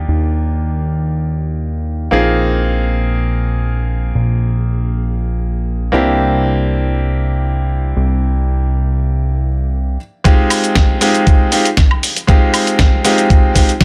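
A bright, intimate grand piano sits up front in this groovy, sleek nu-disco excerpt, its chords pumping with sidechain and trailing delay, with the noise of its action audible. A fat, detuned sawtooth analog bass with a filter sweep and a fast attack that quickly decays anchors the opening until 10.0 seconds, as the harmony moves from Ebmaj7 through Bb7sus4 to C7. At 10.3 seconds a build-up arrives on Fm7, bringing in a thumpy, up-front electronic kick and a gritty, tape-warm, sampler-style soul kit of hi-hat, shaker, medium-tuned snare and woodblock, both compressed and re-recorded in a large room.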